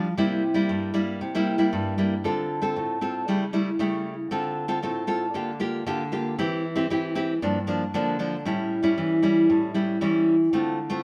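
Nostalgic and bittersweet, this short samba passage in D minor moves at 116 BPM in a straight 4/4, cut from a longer piece. A single nylon-string guitar carries everything from 0.0 to 11.0 seconds, fingerpicked in a classical manner and sitting up front with an acoustic, warm tone that spans G2 to A4. After a brief opening on C7, the harmony settles at 2.2 seconds into a second section that walks through Dm7, A7/C#, Dm7 again, Bb6/D, C/E and Gm7 before A7 leads back home to Dm7 at 10.5 seconds. The playing was captured live in a stone room whose moderate reverb lends a gentle halo to each note. Tuned slightly low to A4 = 439 Hz, the performance feels intimate and wistful.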